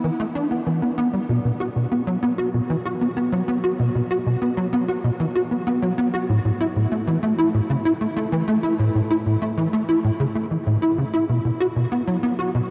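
A tight sequencer bass carries this ambient piece alone, its punchy sawtooth and square-wave tone shaped by a filter pluck with a fast attack that decays into a mellow tail. Ring modulation colours the tone, while ensemble chorus and analog delay thicken the part, and it sits up front, ranging from A2 to F#4 across the full 12.6 seconds. The mood is expansive and mysterious, with a straight, driving feel in common time. A huge, wet reverb with a long 7.1-second decay surrounds the sound, and a worn cassette quality brings a warbling pitch drift. This fragment of a longer piece shifts into a brief new section at 11.3 seconds before it ends.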